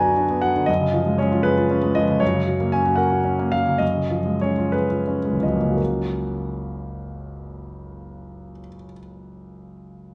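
A clear grand piano sits up front in a wet recital hall, its 1.7-second tail of reverb blooming around an intimate, natural tone in which the noise of the instrument's action can be heard. This brief fragment of a longer romantic character piece for solo piano moves in a lilting 6/8 with free, expressive rubato, and its mood is hopeful and passionate. The piano spans from deep F#1 bass notes up to A#5, opening over a pedal tone with a Bm/F# chord that shifts to C#7/F# before settling onto F#. From 1.4 to 5.8 seconds the pulse gradually slows, drawing the opening phrase out as the harmony leans back toward C#7/F#. At 5.8 seconds a new section begins on F#, carrying the music forward with an ardent sense of arrival until the fragment ends at about 10.1 seconds.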